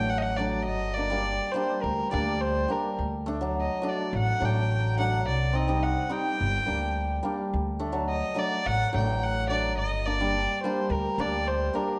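Festive yet soulful, this klezmer excerpt in G harmonic minor moves at 106 BPM in a straight 4/4, with a single dark, nasal, reedy bowed violin carrying the melody up front over a bright, shimmering hammered dulcimer and a woody, growly pizzicato upright bass, all set in a moderate recital-hall reverb as the opening phrase repeats from 7.5 seconds.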